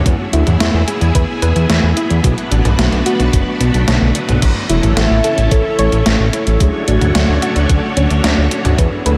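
A dreamy mix soaked in cathedral reverb carries this nostalgic, romantic synthwave excerpt: lush, bright string-machine chords with ensemble chorus and a fat, detuned analog bass both pump with the sidechain, beneath a soft, round pluck arpeggio tinged with 12-bit grit and diffuse delay. A thumpy, overdriven electronic kick joins a gated 80s drum machine of snare, hi-hat, toms and crash cymbal, and the kick drops out at 3.9 seconds for a drum fill. From 5.0 to 7.4 seconds a dark, octave-layered synth lead with phaser, tape echo and vibrato adds a short melody in the background.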